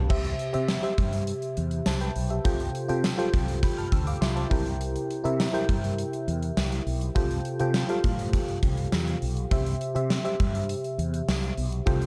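A straight 4/4 pulse drives this short, romantic slice of 1980s-style pop, cut from a longer piece and carrying a glossy sheen throughout. The gated drum kit enters at 0.1 seconds and sits up front, with a fat snare, a punchy kick, bright cymbals, hi-hat, crash and tambourine ringing through an airy, stone-like gated room. Underneath, a mellow fretless electric bass, dark and round with an ensemble chorus, holds down the low end from the very start. An FM electric piano supplies the accompaniment, its glassy, bell-like attack and warbling chorus placed prominently beside the drums. The harmony moves from C to Fadd9/C, through C7 and back, settling on C at 9.5 seconds. Light, small-room reverb and a dark, warm production give the whole passage an intimate gloss.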